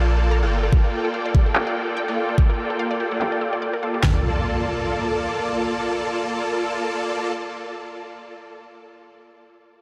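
A huge, detuned supersaw riff under a filter sweep opens this lush, bright future bass excerpt at 145 BPM in Bb major, joined by a background pluck's warbling arpeggios and a brief, boomy 808-style bass with tube saturation that drops out at 0.7 s, where an overdriven dubstep kit with a knocking kick and huge snare takes over in swung half-time, soon joined by very quiet electronic handclaps, until the chords move from Gm9 to Bbmaj7 at 4.0 s and an electronic impact rings out, the synths pumping and everything soaked in a dreamy ambient reverb.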